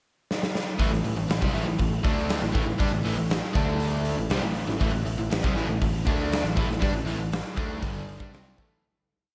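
Classic rock with a confident, sunny mood, opening on a short drum fill from the big acoustic kit, whose punchy kick and medium-tuned snare sit up front in a bright stone room. At 0.8 seconds two overdriven electric guitars enter with a picked power-chord riff moving between A5 and D5: one crunchy and warm with slapback echo set in the background, the other raw and bright. A growly, punchy picked bass drives eighth notes beneath them, doubling the guitar riff, all in light small-room ambience before the piece fades out from 6.8 seconds.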